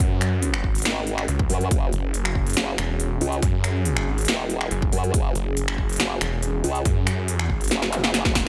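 Heavy wobble dubstep with a menacing half-time feel, this short excerpt cut from a longer piece is built around a snarling, distorted sawtooth bass that growls with overdrive and saturation, heavily compressed and placed up front. At 0.9 seconds a second bass joins in the same low register, a formant-swept pulse-and-sine wobble thickened with chorus and overdrive, pushing the low end further toward the listener. The drums combine a punchy, tape-tinged electronic kick with a layered big-room kit of crisp hi-hats, finger snaps and a punchy snare, re-recorded in a large room and sitting prominently in the mix. Behind them, a lush, detuned unison pad holds bright, full-bodied chords over an F#5 harmony, its chorus shimmer breathing with sidechain pumping. A drum fill arrives at 7.7 seconds, and a brief electronic zap flickers in the background at 7.9 seconds, all set in a digital ambience.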